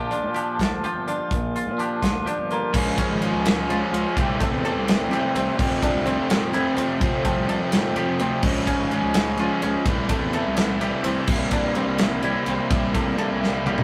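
A twangy, clean electric guitar with tremolo, a dry, woody koto playing fingerpicked arpeggios in the background and a round, fuzzy overdriven bass open this bright, intricate math rock and midwest emo excerpt in 6/8 at 84 BPM in F major, with a punchy modern studio drum kit with bright cymbals joining a split second later. At 2.7 seconds the twangy guitar drops out and a crunchy, double-tracked overdriven guitar takes over with an up-front riff over shifting chords such as Db, Am7/C, Fmaj7 and C9. A drum fill at 13.4 seconds closes the passage, all heard through moderate studio reverb in a rough rehearsal-room sound.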